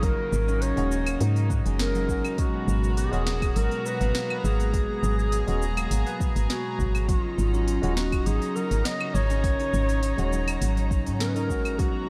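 A breathy, whispered clarinet carries the melody across this meditative, earthy stretch of organic downtempo, its dark subtone and scooped notes set at a distance in a roomy space and trailed by analog delay. Underneath, a woody FM bass sits up front with a round, fast-attack tone thickened by tube saturation, while an electronic kick drum and an afro-pop kit of claves, hi-hat, shaker and sharp snare hold a straight 4/4 at 102 BPM, both tape-colored and given studio reverb. A rich chamber string section plays floating sul tasto chords close to the listener, breathing with sidechain pumping, and a fingerpicked concert harp rings out arpeggios roughened by 12-bit sampler grit and delay. From 0.8 seconds a bright, barky tine electric piano joins in the background through a combo amp, also pumping and delayed. The whole passage rests on a single D#m7 chord, a fragment cut from a longer piece.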